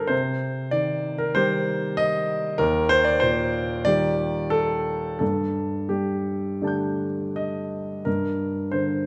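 Rubato phrasing in 4/4 drifts between 78 and 97 BPM in this melancholic, wistful neoclassical minimalist fragment in G minor, cut from a longer piece. A solo grand piano with a warm, up-front tone spans Eb2 to G6, moving from Cm through Eb and Gsus2 before arriving on Gm at 8.1 seconds. It rings out in the wet reverb of a recital hall, a church or concert-hall space that lingers around each chord until the close at 9.1 seconds.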